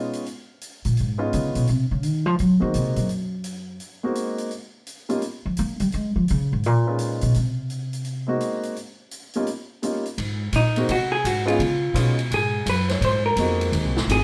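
A brisk swing at 169 BPM in 4/4 drives this relaxed small-group jazz, with the drum kit's hi-hat, ride cymbal and medium-tuned snare sounding natural and set a touch back. The upright bass enters at 0.9 seconds and takes the spotlight, its plucked steel strings thumpy and woody as it solos up front over the Db9, Ab9 and Eb9 changes in Ab mixolydian. An intimate, polished upright piano comps close by with long sustain and audible action noise, until it stops at 13.9 seconds. At 10.6 seconds a vintage hollow-body electric guitar enters up front for its own solo, its picked tone dark, clean and compressed. The whole group sits in a moderate club reverb, heard from further back in the room, and the passage is cut from a longer piece.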